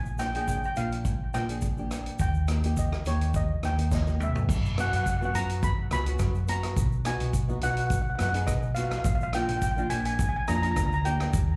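Bittersweet and cool, this calypso excerpt moves at 105 BPM in a straight 4/4, heard as a live gig through a club PA with light reverb, its chords drifting from A#7 through F#sus4 to B and A#. A shimmering, metallic steel pan carries the melody up front with plate reverb, slapback echo and delay, over a round, dark hollow-body electric bass, a fingerpicked flamenco guitar with its own plate reverb and slapback, and a boomy, mid-forward street-band drum kit. A grainy egg shaker sits in the background, and a drum fill at 3.9 seconds leads into the second section at 4.5 seconds.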